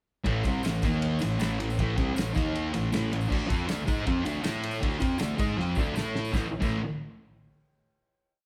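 A straight 158 BPM garage rock stomp in 4/4 drives this short, rowdy, swaggering piece, with a double-tracked, thick fuzz guitar power-chord riff up front, a growling overdriven bass doubling it in driving eighth notes, a cloth-damped, thuddy drum kit with a fat snare and dark cymbals, and a jingly tambourine in the background, all played live in one large reverberant room before a drum fill at 5.6 seconds leads into a final chord at 6.3 seconds.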